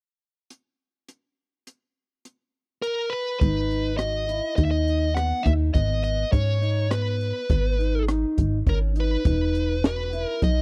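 Progressive instrumental band music in a brooding, tense 5/4 at 103 BPM in G# minor, where a compact, dark cocktail drum kit with a high-tuned snare and punchy kick opens alone before a bright, overdriven lead guitar enters at 2.8 seconds and, from 3.4 seconds, a plucky, wave-folded analog bass and a clean, fingered electric guitar carrying phaser and tape echo join over G#m, all captured in a dry, close 1970s-style studio sound.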